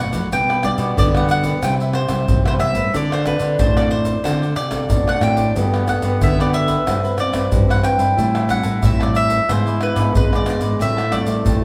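A straight 4/4 samba-and-choro groove of deep surdo, pandeiro, tamborim and egg shaker drives this joyful, sunny excerpt, where a bright, woody mandolin with picked double strings leads up front over a mellow bassoon second line with light vibrato, a crisp cavaquinho in the background, a fingerpicked classical nylon-string guitar with fresh strings accompanying, and a second nylon-string guitar holding the bass, the mix sitting in a wet studio reverb heard from further back in the room.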